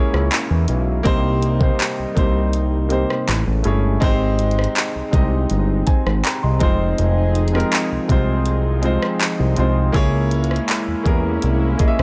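A polished grand piano and a shimmering, chorused pulse-width pad open this tender, dreamy contemporary R&B passage at 81 BPM in 4/4, with the slow-attack pad sustaining retro chords in the background while the present piano moves through Dbm6, Cm7, Amaj7, Abmaj7 and Fm7. From 0.1 seconds a fat, detuned sawtooth analog bass with a fast attack and decaying notes joins an up-front electronic drum kit of knocking kick, warm hi-hat, rim click and handclaps, the kit carrying a small-room character. A digital ambience adds a gentle sheen to this warm, intimate fragment of a longer piece.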